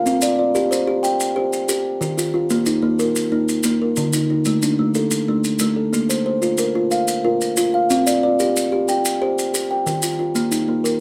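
Rippling and hypnotic, this short cut from a longer southern African traditional piece sets an up-front, woody kalimba spinning mbira-style interlocking arpeggios in a straight 12/8 from the first instant, joined at 0.1 seconds by grainy maracas, with the kalimba's ringing tone heard through a small, wet room.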